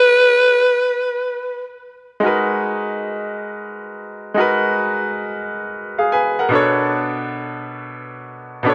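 Played in free time, this short amapiano fragment of a longer piece carries a soulful, deep mood under a lush hall reverb with an RT60 of 2.6 seconds. It opens on a drop, where a raspy alto saxophone sings alone up front from 0.0 to 1.7 seconds, playing a B4 with vibrato and a delay trailing behind it. The saxophone is clear and gritty at its core with a smooth top, in a pop-style solo voice. At 2.2 seconds a bright concert grand piano takes over the accompaniment, sounding from B2 to G#5 with a brilliant, polished tone, a deep bass and a short sustain that keeps it present and close. Its harmony settles on G#m9 before moving to Bm9 at 6.5 seconds and continuing until 8.7 seconds.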